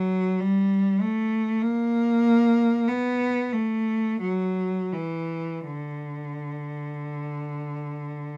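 A single bowed cello sings up front from the first moment, its rich, intense tone carrying vibrato and a smooth top across the range from D3 to B3 in this lyrical, serene classical excerpt in D major, played freely with rubato at a slow 37-51 BPM in 4/4 and set in dark production with light reverb.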